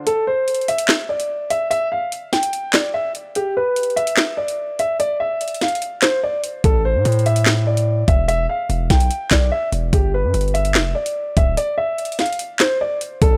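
A half-time drill groove drives this tense, ominous hip hop excerpt, its electronic kit of knocking kick, sharp snare, metallic hi-hats and handclaps sitting up front from the start alongside a dark, mellow baby grand piano melody softened by a low-pass filter and trailed by analog delay. At 6.6 seconds a heavy, aggressive distorted 808-style bass arrives with a fast attack and noise layer, underpinning a brief Am, Em and G progression before the harmony drops out again at 11.6 seconds. The sound is dry and gritty, set in a small room.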